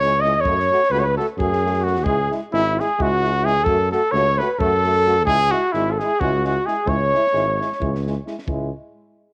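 A dark trumpet with light vibrato leads up front in this bittersweet, restless Balkan brass band fragment in 7/8, shadowed by a very quiet, warm alto saxophone second line, both stopping at 8.1 seconds. Behind them, a clear euphonium and trombone play distant, roomy accompaniment in a classical style, while a mellow, punchy tuba carries the bass up front. A compact cocktail kit with a high-tuned snare, kick drum and rolled-off top keeps time over an F#m and C#m progression in a small, lightly reverberant room.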